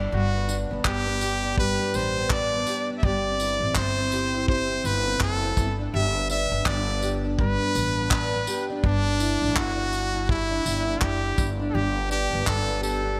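Acoustic pop with a sunny, carefree mood, moving at 83 BPM in 4/4 with a gentle sixteenth-note swing in G major, tuned slightly low to A4 = 438 Hz. A double-tracked, fingerpicked plugged-in steel-string acoustic guitar provides full-bodied accompaniment from the dreadnought, while a woody, dark pizzicato upright bass holds down the low end from the start. A brilliant trumpet carries the melody from 0.1 seconds, up front and forceful, with vibrato, a punchy attack and a smooth top in a pop-style solo. A cloth-damped, thuddy drum kit joins at 0.5 seconds with a tight kick, handclaps and tambourine, its top end rolled off and its sound set in a small room. The harmony circles Gadd9, C/G and Dsus2/G over light reverb and bright 1980s-style digital production, in what is cut from a longer piece.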